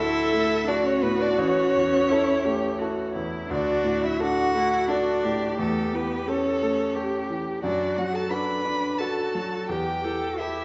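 Bathed in the reverb of a recital hall and gently dulled at the top, this serene, tender fragment of a slow romantic piano quartet movement in D major drifts at 86 BPM in a rubato 3/4, with a focused violin singing the melody with vibrato close and up front, a smooth, even cello carrying a second line from further back, and an intense, distant viola and a polished baby grand piano supplying the accompaniment.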